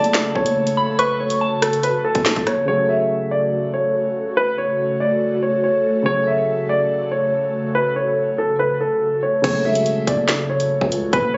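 A half-time drill groove at 142 BPM in F# minor opens this cold, tense hip hop excerpt, with an up-front electronic kit of hard-clipped kick, sharp snare, hi-hat, finger snaps, rim click and crash, plus a growling, buzzy, saturated 808-style bass that drop out around 2.7 seconds and return at 9.4 seconds. Over it, a worn, long-sustaining baby grand carries the dark, mellow melody through low-pass filtering and delay, a deep concert grand plays accompaniment beneath, and an ethereal, airy pad holds detuned chords through ensemble chorus, phaser and built-in reverb. A soft, pure FM synth bell adds a brief second line in the opening seconds with chorus, phaser and delay, and the whole is heard through a phone recording in the room, with club reverb and a dulled top end.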